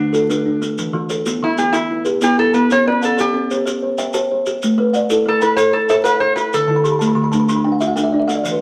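Warm and hypnotic, this excerpt from a longer piece sits in the southern African traditional style, built on a mbira-like interlocking cycle in a straight 12/8. Two kalimbas weave arpeggios throughout: one woody and mellow, with a soft fingertip pluck and a boxy small-room character, the other brighter and airier, plucked with the thumbnail. A metallic, nasal resonator slide guitar, played with fingerpicks, carries the melody up front until 6.9 seconds, and a kalimba fill runs from 6.5 seconds. Grainy, compressed maracas sit low in the mix. The harmony moves through D, E minor, C and A minor before returning to D, all set in a moderate large-studio reverb with a layer of vinyl crackle.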